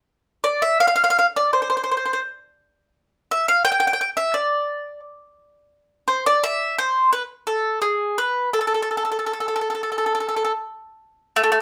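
The rhythm is rubato, with a loose pulse around 86 BPM in 4/4 that gives the phrasing a free, speaking quality. This is a short piece of Italian folk music in A minor, tuned slightly below standard pitch with A4 at 438 Hz, and its mood is passionate and romantic. A lone acoustic mandolin carries the solo from 0.4 to 11.6 seconds, moving between A3 and G5. Its picked double strings give a woody, warm tone, and it sits up front in the sound. A moderate studio reverb adds a modest sense of room around the instrument. The recording is cut from a longer piece.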